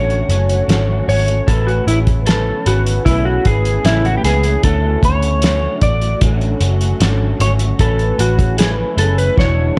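An electric slide guitar leads this hazy, dreamy slice of bedroom-flavoured indie pop, its dark, slightly broken-up tone compressed and set up front with analog chorus and slapback echo as it takes a solo across the whole clip. Beneath it, an electric guitar through a small old amp adds a bright, twangy accompaniment, wavering with ensemble chorus and vibrato. A shimmering, ethereal pad sits in the background with slow-attack, granular sustained chords carrying an octave-up shimmer. The vintage muted picked bass is round and foam-muted, sitting up front alongside a cloth-damped, thuddy drum kit with a fat snare, tight kick and gritty, rolled-off top. The harmony drifts between Dmaj7 and Amaj9 in a light, small-room ambience, and a drum fill closes the fragment at 9.4 seconds.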